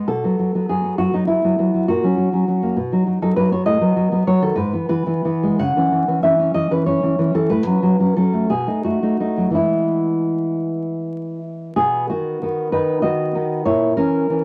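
A romantic solo classical guitar piece in a rubato 6/8, this nostalgic, sunny excerpt features an up-front nylon-string guitar with fresh strings and a full-bodied, thumb-plucked tone, moving through a flowing chord progression that settles on E at 9.6 seconds before a new section begins at 11.8 seconds, all set in a moderate studio reverb with a vinyl crackle.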